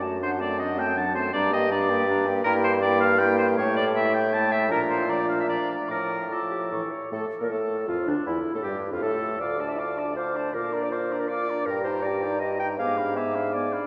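An up-front oboe with light vibrato carries the second line in this quick, restless classical-period movement for wind quintet in D minor, moving at 159 BPM in 3/4 with a rubato feel. Above it a hollow, pure concert flute plays the tongued melody with vibrato, while a clear clarinet and a distant, roomy French horn fill in the accompaniment and a soft-attacked bassoon anchors the bass. The stormy passage, cut from a longer piece, moves into a second section at 7.1 seconds, and the quintet sits in a long, wet cathedral reverb with a rolled-off top end.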